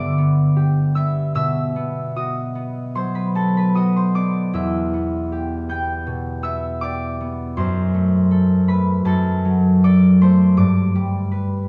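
Wistful and gentle, this brief classical excerpt features a solo concert harp, warm and ringing, played up front with fingerpicked notes spanning E2 to G6 in a rubato 4/4 feel, its chords moving from G through B, Em and D/F# back to G inside a wet concert hall reverb.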